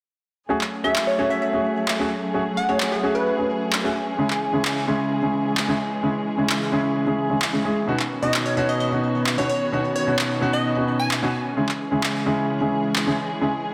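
A polished, up-front grand piano with dub echo carries the accompaniment in this powerful, emotional festival progressive house excerpt at 130 BPM, joined by veiled, con sordino chamber strings holding sustained chords through sampler grit, overdriven layered electronic handclaps in a small room, and a crystalline, detuned wavetable pluck melody with chorus and digital delay that appears in two phrases, the first entering at 0.8 seconds, all over an F#madd9, C#m, Badd9 and C#m progression in a lush hall reverb and a dense, heavily limited master.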